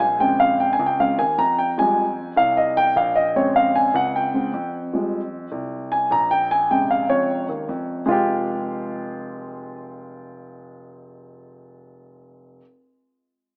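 Afro-Cuban jazz with a driving, sophisticated mood, in which a woody, up-front upright piano carries the accompaniment and takes a solo from 0.0 to 8.1 seconds over Bbm9 and Fmadd9 changes, while a dark, mellow grand piano with audible action noise holds the bass far lower in the mix, all heard through a rough home-demo, AM-radio-like sound bathed in lush hall reverb.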